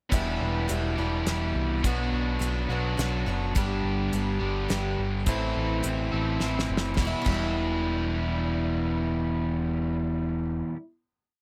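In a light reverb, this complete folk rock and heartland rock piece in E minor moves at 105 BPM in 3/4 with a dusty, wistful mood, its verse cycling through Em7, Bm, G and Am before coming to rest on a held Em7. A shimmering, octave-doubled twelve-string acoustic guitar strums open chord shapes in sixteenths beneath a crunchy, double-tracked overdriven electric guitar ringing out chords up front, while a deep, round dub bass drives eighth notes from the bottom. A damped 70s kit with a fat snare, tight kick, hi-hat and crash cymbal keeps a dry 3/4 groove, plays a fill at 6.4 seconds and stops at 7.4 seconds, leaving the guitars and bass to sustain the final chord.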